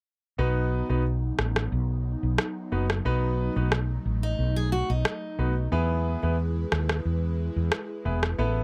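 An electronic rim click, dry and up front with a tape-warm, small-room character, ticks out a straight 4/4 dancehall groove at 90 BPM from 1.4 seconds in this sunny, summery fragment of a longer piece. Beneath it, a dark, growly fretless electric bass with a round, hollow-body tone sits forward in the mix and carries the low end throughout. A clear grand piano plays intimate, polished accompaniment with long sustain and audible action noise, while a soft, breathy pad adds mellow sustained chords, its detuned sawtooth and triangle layers thickened by chorus and a moving notch. At 4.2 seconds a picked steel-string acoustic guitar with old strings and a full-bodied, woody sound briefly adds arpeggios. The harmony rests on B before shifting to E at 5.7 seconds, all in a close, nearly reverb-free sound.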